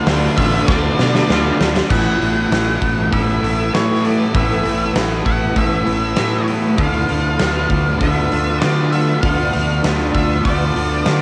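A straight 4/4 groove from a big rock drum kit, up front in a bright stone room, carries this wistful, dreamy shoegaze and dream pop excerpt, with a drum fill from 0.7 to 1.9 seconds as a double-tracked, scooped overdriven electric guitar drops away. A growly fuzz fingered electric bass, a thick fuzz guitar with lush chorus in the background, and a twangy electric guitar trailing reverse reverb churn beneath an octave-fuzz lead guitar melody that is coloured by tape echo and cassette grit. A cloudy, detuned granular pad hangs behind the guitars, and the whole excerpt has the hazy character of a home cassette recording with light reverb.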